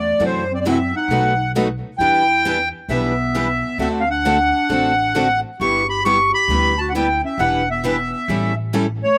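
Acoustic string swing in the jazz manouche style, this charming, swinging passage cut from a longer piece has a reedy, up-front accordion carrying the melody while a dark, breathy clarinet with light vibrato whispers an intimate second line beneath it, both touched by slapback echo. A woody, thumpy pizzicato upright bass on gut strings anchors the harmony, and two bright picked steel-string acoustic guitars enter at 0.2 seconds to pick out accompaniment: one concert guitar carries slapback echo, and a boxy parlour guitar sits in the background. Recorded outdoors with light reverb, it moves from F#m7b5 and B7 through Em7, D7 and G6 before turning on A7.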